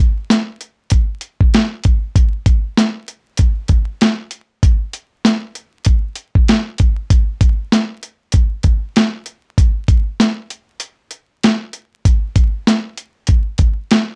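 A dusty, sampler-style drum kit sits up front in this reflective, moody hip hop excerpt at 97 BPM in 4/4 with a 60% swing on the 16ths, entering at 0.3 seconds with a thumpy kick, a medium-tuned snare and hi-hat, all compressed and overdriven, over a dry hardware recording with light reverb, transformer saturation and vinyl crackle, and a break from 10.8 to 12.1 seconds.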